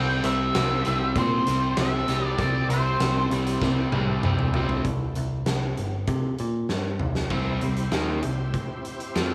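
A sunny, swaggering classic rock cut from a longer piece opens at 98 BPM in C mixolydian with a dark, octave-fuzz lead guitar melody carrying tape echo, a double-tracked, overdriven electric guitar riff, a direct, up-front picked electric bass and a very quiet, bright tonewheel organ holding sustained chords through a slow rotary speaker with key click, before a huge, natural arena drum kit with a fat snare and punchy kick joins almost at once; the lead drops out at 3.3 seconds, and drum fills around 3.6 and 6.7 seconds drive the riff on under light reverb and small room ambience.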